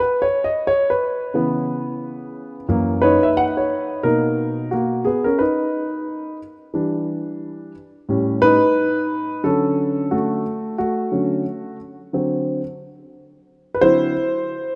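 Hip hop with a smooth, swung feel, this short cut from a longer piece features a lone concert grand piano that sounds dark and mellow, sitting up front and intimate with deep bass and audible action noise. A lush hall reverb gives the vintage tone a soft halo, while the rough home-demo mix keeps it close and unpolished. At 4.0 seconds the harmony opens into a new section of jazzy seventh chords that carries through to the end at 14.8 seconds.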